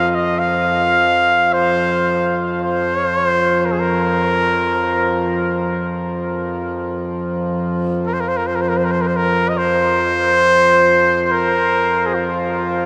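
Haunting and spacious, this short cut from a longer piece of free-time world meditation music sets a clear, classical-style solo trumpet melody up front over the reedy, breathing drone of a hand-pumped harmonium, both sounding throughout its 12.9 seconds. The harmonium's nasal, dark tone sits low beneath the trumpet, and a huge, wet reverb with an eight-second tail places the pair in a vast, echoing space.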